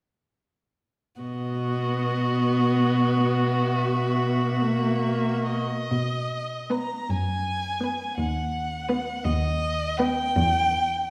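Lyrical and serene, this slow romantic fragment for string quartet moves in a rubato lilt of six, with a warm, expressive first violin carrying the melody up front, shading its notes with vibrato and portamento over a smooth top. A dark second violin with a soft attack sings the second line, while the rich viola and the focused, close cello supply accompaniment and bass, all four bowed by single players who enter together at 1.2 seconds. The music passes into a second section at 5.9 seconds, and the second violin and viola stop at 10.3 seconds, while the whole quartet sits in a wet recital hall, heard from further back in the room.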